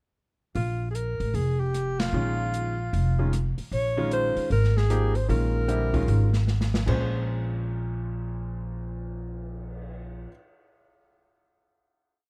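A breathy alto saxophone sits up front from 0.6 seconds, playing short call-like motifs with a soft attack and light vibrato in this searching, hypnotic modal jazz piece in Bb dorian, swinging in 4/4 at 152 BPM. Beneath it, a woody, thumpy upright bass plays pizzicato in a two-feel, prominent in the mix, while a dark-toned drum kit keeps time on the hi-hat with sticks, its boomy kick and dusky cymbals sounding rolled off at the top. A clear baby grand piano joins at 2.1 seconds with syncopated comping in quartal voicings, close and intimate, its action noise audible. After an early band accent, the harmony moves from Bbm7 to Ebsus4, and a short drum fill precedes the closing Bbm9 chord, which rings out from 6.9 seconds. The whole short piece has the small-room ambience and rough balance of a home demo.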